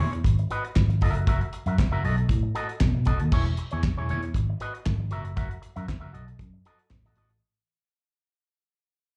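Disco at 117 BPM in a straight 4/4, this short excerpt cut from a longer piece has a glamorous, danceable mood, heard as a live gig through the venue's PA with a touch of club ambience. A fingered electric bass sits up front, amped and warm, carrying the low end from E1 to B2 across the full 7.3 seconds. A damped 70s drum kit enters at 0.1 s with a dry, dark sound, a fat snare, tight kick and rolled-off top, adding hi-hat, handclaps and crash cymbal. An electric guitar played through an envelope filter supplies bright, clean, picked accompaniment between E4 and E5, sitting further back with a twangy slapback echo. The harmony moves through G#m7, F#7 and B7, shifts to E6 at 3.3 s, then returns to the same progression as the recording fades out from 3.3 s to the end.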